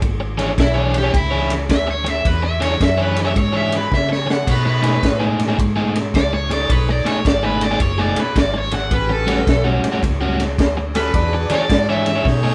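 A swaggering, rollicking electric blues shuffle opens on a round, foam-muted fingered bass and a crunchy, gritty small-room drum kit with a punchy kick, high-tuned snare and dark cymbals, quickly joined by an up-front, bright, compressed overdriven guitar soloing over its riff and a cranked stack guitar carrying the melody, with a drum fill at 3.9 seconds before a soft-attack saxophone section adds vibrato-rich jazz stabs from 4.5 seconds as the chords move from E13 through B13 and A13 and back to E13, all played live together in one room with moderate reverb.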